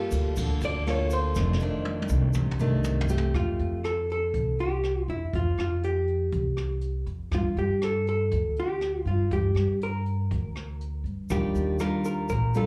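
Bossa nova with a breezy, sunny mood, heard live through a club's sound system and cut from a longer piece. A dark, clean hollow-body jazz guitar carries the melody with slapback echo, soloing over the opening chords while the brushed drum kit plays a fill from 1.4 s, and a woody, thumpy upright bass sits up front beneath rolled-off brushwork. A bright, fingerpicked nylon-string guitar with audible finger squeak accompanies at the start and returns at 11.3 s, along with a grainy egg shaker in the background.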